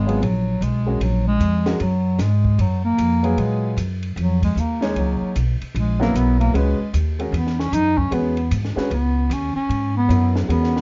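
A dark, softly reverberant production with its top end capped at 7.6 kHz gives this short modal jazz passage, cut from a longer piece, an intense, searching mood over a swinging 4/4 pulse. A warm bass clarinet takes the solo for the whole stretch, sitting up front and present, its jazz phrasing colored by vibrato and scooped notes. Pizzicato upright bass on steel strings anchors the low end, woody yet bright and also placed close to the listener. A grand piano with short sustain supplies accompaniment, voicing a rootless Ebmadd9 before moving to Dbm11 at 5.0 seconds. Further back, a compact cocktail drum kit in a small room keeps time on ride, hi-hat, high-tuned snare and punchy kick, its smooth sound rolled off at the top.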